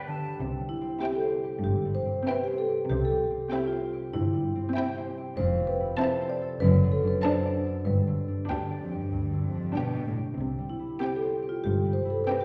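This cinematic film cue has a playful, whimsical and mischievous mood in a straight 4/4. A marimba with medium mallets on rosewood bars carries the melody up front from 0.7 seconds, while a focused, vibrato-rich chamber violin section sings a high melody of its own and a second violin section plays a bowed line in the background. A smooth, distant viola section fills in the accompaniment, and a mellow concert harp rings out fingerpicked arpeggios across a broad range. From 0.4 seconds an even cello section and a lush, woody double bass section share the bowed bass. The harmony moves from C through Fmaj7, D7/F# and G before settling back on C at 10.4 seconds, all heard from further back in a scoring stage with a generous, wet reverb.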